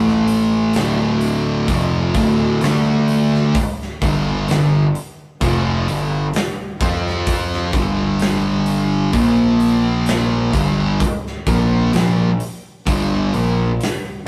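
A thick, double-tracked fuzz guitar sits up front, its distorted, picked riff ranging from low D2 up to F4 and carrying the weight of this ominous, sludgy stoner and doom metal excerpt in a straight 4/4. Beneath it, a picked electric bass adds a growly, overdriven bite that stays bright and punchy as it anchors the low end. A big rock drum kit with a punchy kick, medium-tuned snare and hi-hat enters at 0.1 seconds, sounding acoustic and roomy. The harmony moves from A5 to Dm before shifting through G5, F5 and Bb5 power chords, giving the riff a heavy, brooding pull. A moderate stone room reverb and the rough rehearsal-room recording lend the whole a raw, cavernous atmosphere, as though cut from a longer piece.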